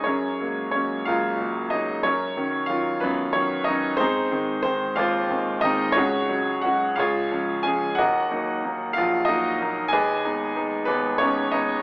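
In a rubato 6/8, a bright, brilliant grand piano plays alone and up front throughout this calm, lyrical classical fragment, its long-sustaining, open tone ringing through a moderate recital-hall reverb behind an AM-radio filter as the harmony drifts from F#add9 toward a closing G#m/D# near 9.9 seconds.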